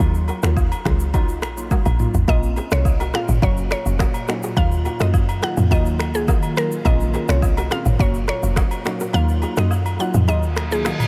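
This afrobeats excerpt moves at 105 BPM in a straight 4/4 with a sultry, hypnotic mood, cycling through minor-add-nine chords and a major chord. An electronic drum kit with a deep kick sits up front, built from finger snaps, rim click, shaker and toms, alongside a woody, punchy log drum bass with a fast attack and decaying tail. Glassy, detuned digital keys with chorus and a filter sweep supply the accompaniment, while a very quiet, crisp fingerpicked kora rings out a riff and agogo bells and woodblock add small-room percussion from 0.3 seconds. After a drum fill, a round, full-bodied mallet-like synth pluck carries the melody from 2.3 seconds through chorus and a diffuse ambient delay, and an ethereal, airy pad with a slow attack and ensemble chorus settles in the background from 3.0 seconds. Near the close the kick drops out and an electronic reverse cymbal rises at 10.5 seconds, all within a light reverb.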